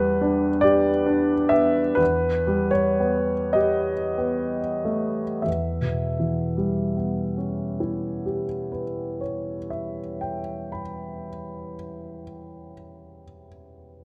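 Unhurried rubato phrasing in 4/4 slows through the opening 5.5 seconds before the music moves into a new section, giving this impressionist solo piano passage, cut from a longer piece, a nocturnal, wistful mood. A single grand piano spans the low bass up to the upper treble with a clear, polished, intimate tone and long sustain, its action noise audible as it sits up front. Close, detailed microphones capture the instrument within a moderate concert hall reverb, and the harmony drifts from an Em7 through a Baug7/E to an Em6 at 5.5 seconds.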